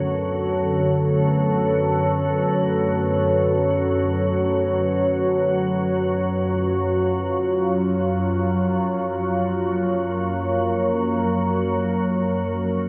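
Desolate and ominous, this free-time dark ambient drone excerpt sets a deep, sawtooth-edged pad holding sustained chords that shift from D6 to F# at 5.1 seconds over a calm, detuned organ-like drone, while a ringing bronze singing bowl stays barely audible beneath, all steeped in a huge, wet reverb and the worn, warbling pitch drift of old cassette tape before fading out from 11.5 seconds.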